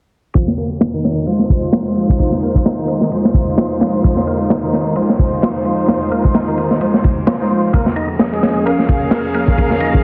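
Breakbeat with a gritty, swaggering mood, this clip from a longer piece rides a swung 4/4 groove. A crunchy, saturated drum kit of kick, snare, hi-hat and ride sits up front, its punchy kick and dark cymbals rolled off at the top, with a filter sweep running through the whole passage. A percussive tonewheel organ plays a riff from the start, lightly overdriven and thick, with key click, a fast rotary speaker and tape echo, while a muted, con sordino string section enters at 1.3 seconds with veiled, bowed stabs carrying vibrato and echo of their own. The harmony moves from Fm7 to Bbm7, and at 8.0 seconds a warbling, nostalgic tape-like pad slips in behind with detuned, lo-fi sustained chords, chorus and sidechain pumping. The whole mix sits in a lush hall and is squeezed into a heavily compressed, radio-like sound.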